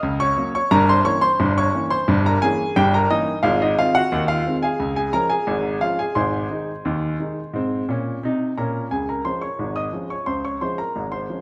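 A warm grand piano sits up front in a wet recital-hall reverb, its intimate, natural tone carrying audible action noise that brings the instrument close. This short ragtime fragment, cut from a longer piece, is playful and jaunty, moving in a straight two-beat metre. The solo piano plays alone for the full 11.4 seconds, ranging from deep bass notes up into the high upper register. The harmony opens on Gb and passes through a diminished chord before settling onto Ab7, Db and Ab. At 8.9 seconds a new section begins back on Db, and the fragment breaks off soon after.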